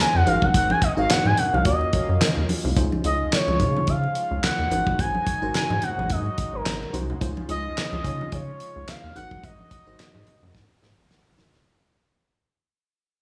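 A lightly swung 16th-note groove at 108 BPM drives this slick, funky early-eighties boogie funk excerpt, where a dry, fat-snared drum kit with handclaps and gated reverb sits up front over a rubbery, bouncy square-wave bass. Ringing congas and a soft sawtooth pad with chorus and tremolo stay in the background, while a glassy, bell-like FM electric piano adds accompaniment. A smooth, expressive synth lead carries the melody with vibrato and analog delay over Ab7, Ebm9 and Dbmaj7 chords, and the whole piece fades out from 2.8 seconds to the end, with drum and electric piano fills arriving at 10.5 seconds.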